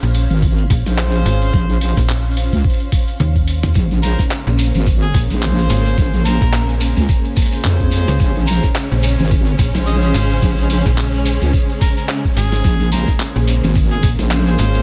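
Swung sixteenths at 108 BPM drive this funky, gritty glitch hop excerpt in Bb minor, where a thumpy, pitched-down electronic kick and a tape-warm boom bap kit of handclaps, hi-hat, snare and toms sit under an up-front pair of basses, one snappy with a metallic FM attack and one a heavy, detuned wobble with chorus, while a cloudy granular pad pumps in the background and punchy horn stabs with delay ride above; a drum fill at 3.2 seconds brings in a mellow shekere, a bowed chamber string section, and a clear harmonica melody at 4.0 seconds carrying 12-bit sampler grit and delay.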